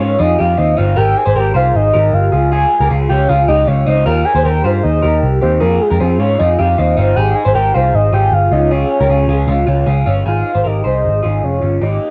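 A home cassette recording with a dusty, muffled top end and a moderate studio reverb opens this breezy, nostalgic slice of jangly indie pop, cut from a longer piece and moving at a brisk 155 BPM in 4/4 with a straight feel in Ab major. A soft, full-bodied synth lead layered in octaves carries the melody between Ab4 and Ab5, its triangle-and-sine tone thickened by a sub octave, with a fast attack, long sustain and vibrato, and colored by chorus, phaser, a cassette tape effect and plate reverb. Beneath it, an electric guitar through a small old amp picks up-front arpeggios from C4 to C5, its dark, slightly broken-up tone washed in phaser and plate reverb. A vintage muted picked electric bass sits forward in the mix with a round, punchy, foam-damped thump, ranging from F1 to Ab2. The chords cycle through Fm7, Abmaj7, Db and Eb before the passage settles onto Abmaj7 at 10.3 s for a brief closing section.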